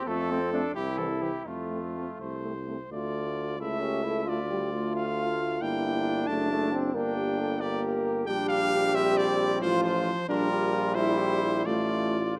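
A rubato 6/8 pulse carries this stately classical brass quintet excerpt, where an up-front trumpet with light vibrato and a soft attack sings the melody over a vintage-toned flugelhorn second line, a bright bass trombone, a smooth-topped French horn in the background and a close-miked trombone in accompaniment, heard in a recital hall's moderate reverb as the harmony turns from minor to major at 8.3 seconds.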